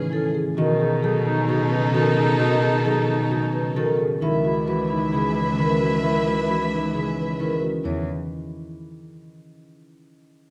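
A moderate recital-hall reverb, with a decay of 1.7 s, gives this bright, hypnotic fragment of classical minimalist pattern music an open, resonant setting. At 132 BPM in a straight 4/4, a fingerpicked concert harp sits up front as the ringing accompaniment, while a marimba played with soft mallets on padauk bars spins mellow, woody, round arpeggios. A close, dark solo cello carries the bass with expressive vibrato and portamento. A rich, focused chamber string section holds bowed sustained chords, and a clear, distant clarinet traces a second line in a roomy classical style. The vibraphone, struck with medium mallets and shimmering with slow motor vibrato, sings the metallic melody from the background, entering at 0.1 s. The harmony moves from Amaj9 to B9 and settles on C#m11 at 4.2 s before the parts fall away around 8.1 s, as the passage is cut from a longer piece.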